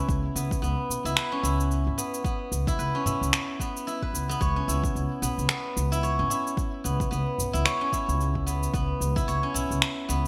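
A loping groove at 111 BPM in 4/4, with a 16th-note swing of 58%, carries this hypnotic, earthy slice of organic downtempo in C# minor, cut from a longer piece and resting on a single C#m7 chord. An electronic kick drum with a deep, tape-warm thump and a forward set of electronic shaker and finger snaps, treated with gated reverb, start at 0.1 s and drive the pulse, the kick dropping away at 9.3 s. Underneath, a woody, dark pizzicato upright bass on steel strings holds the low register with sidechain pumping. Up front, a steel-string zither played with fingerpicks spins ringing, silvery arpeggios through a delay from the very start. A small udu surfaces briefly in the background at 3.1 s and again later, while the bright 1980s-style digital production wraps the whole in a moderate plate reverb and small room ambience.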